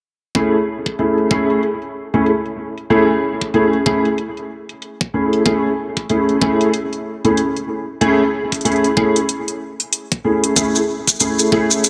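A dark, worn grand piano leads this gritty, swaggering glitch hop excerpt, its boxy stabs sitting up front between A3 and G#4 on an Amaj7 chord, colored by ensemble chorus, analog delay, a low-pass filter and sidechain pumping. Beneath it, a knocking, tape-warm electronic kick and metallic hi-hats, both re-recorded in a small room, drive a swung 94 BPM groove in 4/4. Grainy, close maracas join at 10.6 seconds, and the whole dreamy mix is soaked in a lush hall reverb.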